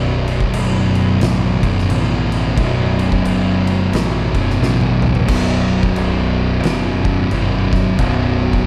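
A light reverb sits over this ominous, brooding excerpt of stoner and doom metal, cut from a longer piece and moving at 88 BPM in 4/4 with a loping swing on the eighth notes. Two thick fuzz guitars play the riff from the very start, one up front and one in the background, both dark, distorted and picked, with the chord sounding as B5. Beneath them a growling fingered electric bass, bright, overdriven and punchy with a direct, amped tone, digs down as low as B0. An oversized low-tuned acoustic drum kit joins at 0.3 seconds in a bright stone room, its smooth, dark character carried by a punchy kick, a fat snare, toms and dark crash cymbals. A drum fill from 4.6 to 5.3 seconds leads the riff into a new section that runs to the end at 8.7 seconds.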